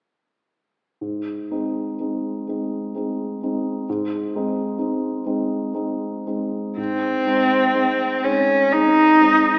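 A dark, mellow concert grand piano opens at 1.0 s on an A-flat major chord, laying down a deep-bassed accompaniment in a tender, serene romantic classical passage in 3/4, moving with rubato at around 55-66 BPM. At 6.8 s a single bowed cello enters up front with a rich, focused melody, its vibrato singing over a smooth top until the passage breaks off at 9.6 s. A wet hall reverb surrounds both instruments, though the whole recording carries an AM-radio character.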